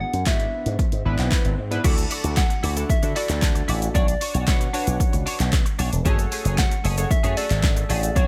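An overdriven analog drum machine sits up front in this driving, confident dance-pop excerpt at 114 BPM in a straight 4/4: a punchy kick and snare, handclaps, hi-hat, shaker and crash cymbal, with a short room on the snare, clap and hats and a re-recording in a large room. A slap bass runs through an envelope filter, bright and amped, with sidechain pumping. A glossy, retro polysynth built from pulse, sawtooth and triangle waves adds pulse-width modulation, a filter sweep, chorus and its own sidechain pumping, while a round, gentle FM lead with a keys-like, decaying tone carries the melody in chorus. A very quiet electronic swell appears from 0.5 to 1.8 s, and at 1.8 s a clean, compressed twelve-string electric guitar joins with a picked riff through analog chorus. The harmony opens on E7, then moves through Dadd9, Bmadd9 and F#madd9 in a dry mix with little reverb.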